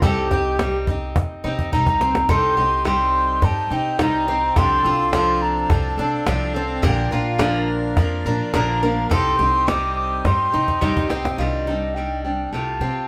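A pure wooden flute with vibrato, a crisp attack and lifted highs carries the melody of this reflective, melancholic acoustic folk piece, cut from a longer performance, and it leads as a solo at the opening. Beneath it, a picked steel-string guitar with an auditorium-sized body and audible finger squeak plays the accompaniment, while a boxy parlour twelve-string fingerpicks shimmering, octave-doubled arpeggios. A dark, pizzicato upright bass anchors the low end, and a close, up-front cajon with faint snares keeps a straight pulse, adds brief fills and stops at 11.4 s. From 2.3 s a majestic full pipe organ, brilliant with mixtures, chiff and baroque voicing, sits in the background holding sustained chords until 11.4 s. The harmony stays in a minor mood before the closing bars settle onto added-ninth chords, all within a moderate studio reverb.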